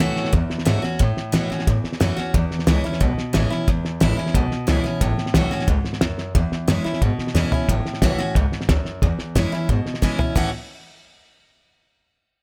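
Rowdy, upbeat rockabilly at 180 BPM in A major, cut from a longer piece, with a bright, freshly strung jumbo steel-string acoustic guitar picking chords up front over A6 and E6 changes, a woody, thumpy pizzicato upright bass on gut strings, and a dry, cloth-damped drum kit with a fat snare and tight kick that plays fills at 7.3 and 10.0 seconds, all in a small room.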